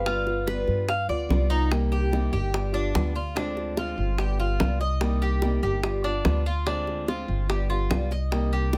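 Latin Cuban son with a guajira lilt, this danceable, sultry excerpt moves at 146 BPM in a straight 4/4, cycling through G7, Cm7 and Dm7b5 chords. Up front, woody pizzicato upright bass thumps beneath round, low-tuned bongos struck with hard hands, while the Cuban tres spins metallic, double-strung arpeggios and a boxy fingerpicked archtop guitar fills in the accompaniment. A full-bodied, thumb-plucked nylon-string guitar sounds a brief melody in the background until 1.3 seconds, all captured close and dry with little reverb.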